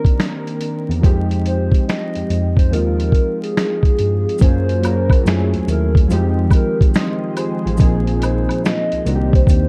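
Lo-fi hip hop excerpt at 71 BPM with a hazy, melancholic swing: warbling, chorused synth keys and a muffled, pitched-down sampler drum kit with thumpy kick and finger snaps open together, a worn, slightly out-of-tune tine electric piano takes the bass from 0.9 seconds, a hollow, woody clarinet-like synth lead with vibrato and analog delay sings from 1.5 seconds, and at 4.4 seconds a very quiet tape-like pad plus close, dry maracas and woodblock join as the chords move from Cm7 and Fm7 through Gbmaj7 and Bb7sus4, all under dark vinyl crackle.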